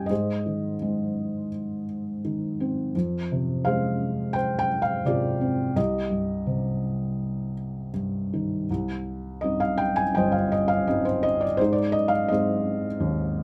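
A felt-muted upright piano carries this short classical fragment alone, its dark, mellow tone sitting up front with the soft clatter of its action audible beneath the notes. The mood is moody and bittersweet, set in C minor at 84 BPM in 4/4, though the playing breathes with rubato. Spanning from G1 up to Ab5, the piano moves through Ab, F minor and C minor in its opening passage before a new section arrives at 8.7 seconds and returns to Ab near 11.6 seconds. Close, detailed microphones and a light reverb give the sound an intimate, vintage character, as if heard from beside the instrument. Tuned slightly below standard pitch, the smooth, muted timbre lends the brief passage, cut from a longer piece, a hushed, private feel.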